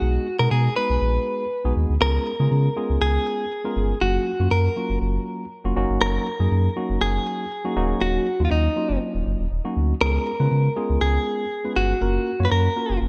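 Dance-pop at 120 BPM in a straight 4/4, this short cut from a longer piece feels confident and driving. A deep, full sub bass with an octave layer sits up front, its sine-and-triangle tone striking with a fast attack and sustaining from Eb1 up to Db3. Over it, a direct-recorded clean electric guitar carries the melody between Eb4 and B4, picked and compressed, placed up front and dressed in spring reverb and tape echo. A tine electric piano fills in the accompaniment from Gb3 to Db5, its worn, slightly out-of-tune voice coming through a combo amp. The harmony moves through B6, Db7, Gbmaj7, Ebm7/Gb and Ebm7, returning to Db7 at 10.0 seconds and landing on Gbmaj7 at 12.0 seconds, all inside a digital ambience.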